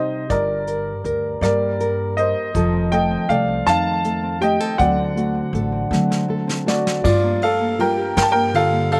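Reflective and melancholic, this short excerpt of an acoustic folk-pop ballad in 6/8 sets a clear, present grand piano melody up front, over dark, full-bodied fingerpicked nylon-string guitar and woody pizzicato upright bass moving through Gm, F7, D7 and Gm7. A soft brush drum kit with a punchy kick and airy cymbals comes in at 0.3 seconds, a ringing Celtic harp adds arpeggios from 2.5 seconds, and a drum fill at 5.9 seconds leads into a new section at 7.0 seconds. The sound is dry and close, with little reverb and an outdoor feel.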